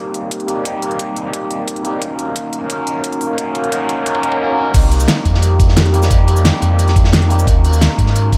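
Soaked in moderate plate reverb, this dreamy, melancholic liquid drum and bass excerpt at 176 BPM opens with a barky, overdriven tine electric piano, up front through a combo amp with phaser and tape echo over Cm7 and Ebm7. It is joined by a pop drum kit with fat snare and crisp hats and a knocking electronic kick, building through a drum fill from 2.0 to 4.4 s before the drop at 4.7 s brings in a deep, full sub bass with octave and a crunchy, saturated breakbeat kit with a medium-tuned snare.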